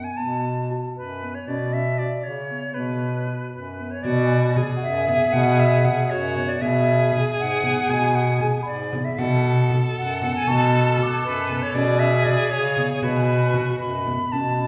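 Hypnotic and pensive, this contemporary chamber piece in an uneven 5/8 pulse sets a reedy, vibrato-tinged concert flute melody up front over a clear, soft-attacked bass clarinet and mellow, woody marimba arpeggios played with soft mallets. At 4.0 seconds a focused, bowed viola adds a second line and a small frame drum enters very quietly under soft hands, followed at 4.3 seconds by a delicate, bell-like celesta. A wet concert-hall reverb places the ensemble further back in the room, and the harmony shifts through G#m7 and Bm9 before settling on B5 in this passage cut from a longer work.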